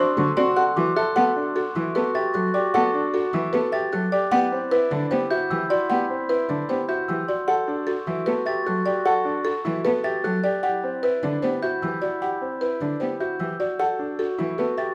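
A buzzing, woody marimba struck with medium hard mallets carries the melody in this propulsive, bright stretch of minimalist pattern music, cut from a longer classical piece. Beneath it, an up-front grand piano with a clear, vintage tone spins arpeggios, while a glockenspiel played with rubber mallets adds soft, bell-like arpeggios that ring high above the texture. A distant, roomy clarinet supplies a warm second line in a narrow middle range. From 0.2 s a single bowed cello, close and intimate, plays a sul tasto accompaniment with light vibrato and an airy, soft-attacked tone. The harmony opens on D7 and settles on Gmaj9 at 1.2 s, then moves through Cmaj9, Gmaj7sus2 and Cadd9 before returning to Gmaj9, all in a moderate recital hall reverb.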